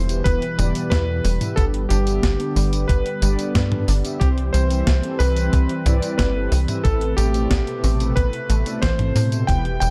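A straight 4/4 synthwave groove drives this moody, cut-from-longer excerpt, built on an overdriven, thumpy electronic kick and a clean 12-bit drum machine whose hi-hat, medium-tuned snare, tambourine and toms sound sampler-style and overdriven, re-recorded in a small room. Up front sits a tight, punchy sequencer bass, a sawtooth-and-square line with a fast-attack, decaying filter pluck and a moving notch. Beneath, a smooth, detuned analog pad holds dark sustained chords with slow attack, chorus and sidechain pumping, while mellow, round synth brass adds chorused stabs with vibrato, entering at 0.1 seconds. A very quiet, lush unison pluck, wave-folded and ring-modulated, spins bright arpeggios. The melody belongs to a vintage electric grand piano with a clangy low end, grainy 12-bit sampler character and tape echo, all set over chords moving from Em through G and C to Amadd9 in a dark production with light reverb and a barely audible impact near the start.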